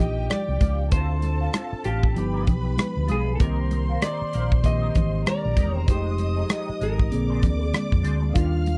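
A short fragment of lush, smooth 1970s-style soul opens with the whole band together: a bowed string section, a barky, worn electric piano colored by phaser, and a round, overdriven fingered bass sitting up front. A picked electric guitar through a small old amp carries the melody in a slightly broken-up, lo-fi tone until about 8.0 seconds. A second, twangy guitar from the same kind of amp plays a riff treated with wah and analog chorus, set lower in the mix. A tight, polished acoustic kit drives a swung sixteenth-note feel with hi-hat, kick and rim click, while thick-skinned congas sit close and dry in the background. The strings add a woody, vibrato-rich second line above jazzy harmony moving from Ebmaj9 through Dm9 and G7b13 to Cm7, Fm9 and Bb9. The recording is dry and close, with little reverb, in a period studio style.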